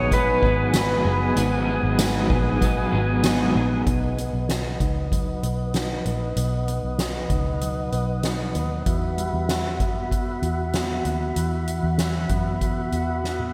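Ethereal and dreamy, this dream pop passage in B major moves at 96 BPM in a straight 4/4. It opens on G#m7 with a twangy pedal steel melody, played with fingerpicks and slide and trailed by delay, over a slightly broken-up picked electric guitar soaked in tremolo and lush chorus; the steel falls away at 3.2 seconds and the picked guitar at 3.9 seconds as the harmony shifts to B and then Emadd9. Throughout, a clear tonewheel organ with key click and slow rotary speaker holds chords, a dark, compressed clean guitar arpeggiates in the background, a round, foam-muted vintage bass anchors the low end, and an up-front soft-mallet kit with a fat snare, boomy kick and gated reverb closes on a drum fill at 13.2 seconds, all inside a lush hall reverb with a bright 1980s-style digital sheen.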